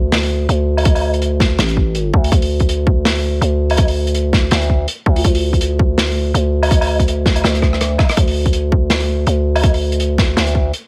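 Heavy and spacious in a studio reverb, this half-time drum and bass excerpt at 164 BPM with a swung feel pairs a growling, buzzy 808-style bass held up front with a gritty, saturated breakbeat kit of hi-hat, rim click, medium-tuned snare and woodblock, driven by an overdriven, hard-clipped electronic kick, while a very quiet, woody marimba with soft mallets sounds a single F4 at 5.2 seconds and a drum fill arrives at 7.4 seconds.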